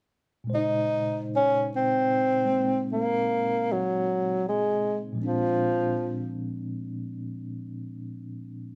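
Jazz ballad fragment with an intimate, smoky mood and swung eighths, in which a warm, vibrato-laden tenor saxophone sings a solo melody up front until 6.3 s over a clean tine electric piano, shaded by medium tremolo through a combo amp, that moves from Bbm11 to Bb7 and rings on alone to 8.8 s, the pair set in a moderate large-studio reverb with the live feel of a band sharing one room.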